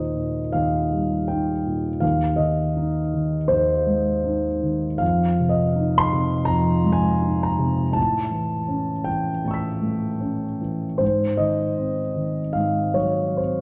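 A warm concert grand piano carries this short impressionist classical excerpt alone, sounding close and intimate with audible action noise, deep bass and long sustain. The mood is luminous and hazy, moving at a rubato 80 BPM in 4/4 with uneven, flexible beats. The piano spans from Eb2 up to B6, and the harmony drifts from Ebadd9 through Ab/Eb and Fm7 to A9 at 8.0 seconds before settling on Ab7 at 11.0 seconds. A wet recital hall reverb surrounds the instrument, and the dark, warm production keeps the tone natural. Cut from a longer piece, the passage runs 13.6 seconds.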